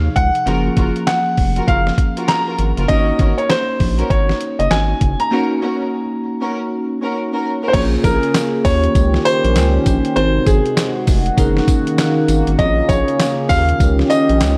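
New jack swing R&B at 99 BPM with a bouncy, punchy swung feel, this excerpt from a longer piece sets an up-front concert grand piano melody over a bell-like tine electric piano with phaser, a round, deep analog bass and a gritty, pitched-down boom bap drum kit of thumpy kick, handclaps, tambourine, hi-hat and crash. Distant, woody string stabs with vibrato colour the first half until 7.8 s, with a break from 5.3 s, and at 7.7 s a resonant, evolving pad with chorus and phaser takes over with sustained chords. Harmony moves from Gbmaj7 and Ab9sus4 into a Bbm7, Eb7, Ab7, Gb6 progression, all framed by light reverb in a dark production.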